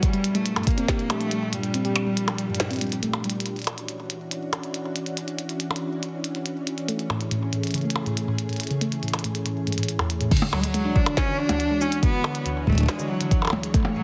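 A rich, intense bowed cello with vibrato, a smooth top, 12-bit sampler grit and dub echo carries the melody up front, stepping away after the opening and returning at 10.5 seconds in this playful, glitchy IDM fragment. Underneath, a silky string machine with warbling ensemble chorus holds mellow sustained chords throughout, while a dark, harp-like synth pluck rings out chorused arpeggios through a filter sweep and moving notch. A glitchy kit of tiny snare, clicky hats, cabasa, crash and percussion blips runs the whole way, with a drum fill at 3.2 seconds, and a deep electronic kick appears only briefly at the start and again near the end, all set in an echo-chamber reverb with a heavily compressed, radio-like sound.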